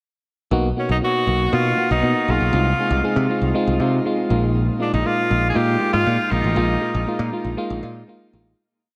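This is a short 1980s-style pop piece at 119 BPM in a straight 4/4, nostalgic and glossy, framed as a pre-chorus that runs from 0.5 to 8.6 seconds. An FM electric piano carries the accompaniment with a warbling, vintage tone and a faint noise layer, playing close-voiced chords in an eighth-note rhythm through Bmaj7, Ab6/C and Bb7sus4, with shimmer reverb on its fast-attack, decaying notes. Beneath it a picked electric bass sits punchy and direct, driving a syncopated pop-funk line full of muted ghost notes and chromatic approach notes. A bright tenor saxophone enters at 0.8 seconds with a forceful, vibrato-laden solo built on hook-like motifs, its roomy, distant sound further colored by shimmer reverb and analog delay. The whole mix is dreamy and soaked in a huge ambient reverb, and the piece fades out over its final two seconds, from 6.6 to 8.6.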